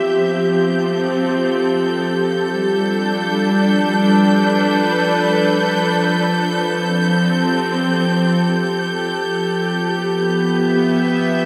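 Unfolding in free time, this serene, peaceful ambient passage in F lydian drifts through Fmaj7, G7, F and Em, cut from a longer piece. A dark studio string section carries the sustained chords from the opening, bowed sul tasto with light vibrato and a soft attack, sitting intimate and up front from F3 to E5. At 1.0 seconds an analog drone settles in beneath, its sawtooth and pulse-wave tones shifting through pulse-width modulation, resonant and evolving with a slow attack, long release and a chorus effect. High above, a lush symphonic violin section holds a focused, vibrato-rich G6 with a smooth top, adding a warm texture. A huge, wet reverb with a 7.5-second decay surrounds the whole ensemble, giving it a vast, floating calm through to the close at 11.5 seconds.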